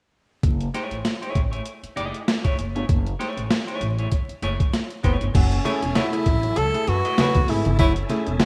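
A rough home-demo mix with vinyl crackle and light reverb frames this cool, funky passage, cut from a longer piece and moving at 98 BPM in 4/4 with a swung sixteenth feel in F# minor over an F#m9 chord. From 0.4 s a compressed breakbeat sampler-style kit with vintage 12-bit grit, a thumpy kick, medium-tuned snare, hi-hat and crash sits up front beside a woody, growly pizzicato upright bass. A clean, picked semi-hollow electric guitar adds accompaniment colored by tremolo. At 5.0 s a close-miked tenor saxophone takes the melody up front, its mellow subtone carrying a light vibrato. From 5.3 s a raspy trombone with scooped notes plays a second line in the background, alongside stringy auto-wah clav stabs through a combo amp and a very quiet, lightly overdriven tonewheel organ with key click and fast rotary speaker, joined at 5.4 s by distant, low-tuned congas played with soft hands.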